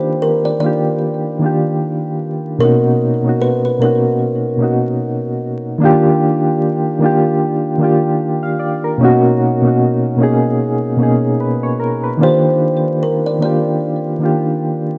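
A 75 BPM hip hop groove with swung sixteenths sets a nostalgic, cosy mood in Eb major, as soft, round electric-piano-like synth keys with chorus and tremolo sit up front and move between Ebmaj9 and Bmaj9 chords. A woody, hollow kalimba with a ringing thumbnail pluck and analog delay carries the melody until 5.8 seconds, then returns at 12.2 seconds. The dark production adds spring reverb, small room ambience and vinyl crackle to this fragment of a longer piece.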